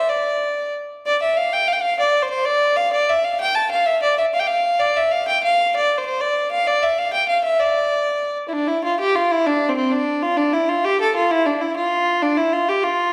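A lone fiddle sounds up front in a resonant recital hall, its reverb lingering about 1.5 seconds in a church-like space. The piece is a driving, ancient-feeling medieval tune in a straight 6/8, and this short cut from a longer work quickens steadily across its 13.1 seconds. The single bowed fiddle has a warm, nasal, reedy gut-string tone with a boxy edge, carrying the melody alone from start to finish.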